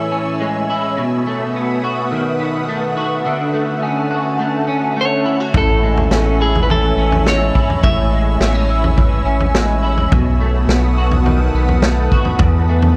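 A straight 4/4 pulse at 105 BPM carries this ethereal, floating dream pop fragment in A major. A slightly broken-up, compressed electric guitar picks chorused arpeggios with tape echo over a mellow, detuned pad of sustained chords, while a clean electric guitar opens with a brief melodic phrase and returns at 5.0 seconds through spring reverb and tape echo. At 5.5 seconds a round, nasal analog bass and a punchy vintage drum kit with a rolled-off top enter, and the whole mix sits in a moderate shimmer reverb within a dark production.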